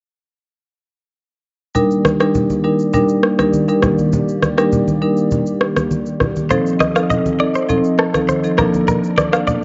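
A medium-malleted marimba opens this joyful, breezy afrobeats excerpt at 1.7 seconds, sitting up front with a warm tone as it carries the accompaniment at 101 BPM in a straight 4/4. From 1.8 seconds a hollow, soft pad joins with sustained, flute-like chords, its dark, detuned body thickened by chorus. Alongside it come a produced electronic shaker and rim click, plus low-tuned congas with a thick-skinned, soft-handed sound. The harmony moves from Ebmaj7 to F7 and then Bbmaj7. At 6.5 seconds a bright, twangy clean electric guitar steps forward with a picked, compressed riff, bathed in spring reverb and tape echo. The whole mix sits in a small, lightly reverberant room and has the worn character of old cassette tape, with warbly pitch drift and a dulled top end.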